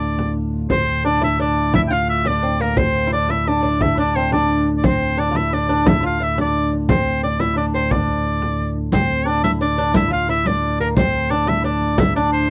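A bright shawm leads this medieval dance in 6/8, carrying a folk-style solo melody up front with a vibrato that gives it a keen, mysterious edge. Beneath it, a fingerpicked lute with gut and double strings, some doubled at the octave, plays a delicate second line touched with tape echo. A pipe organ on soft flute stops holds a low drone with tremulant and romantic voicing, sitting close and warm in the mix. A deep, large frame drum played with hard hands enters almost at once, close and dry, giving the music its driving momentum. At 8.9 seconds the opening section returns and a riq joins with jingles played by soft hands in a small-room sound, and both drums stop at 12.2 seconds as this cut from a longer piece reaches its end. The recording has the dry, close feel of a 1970s-style studio with light reverb.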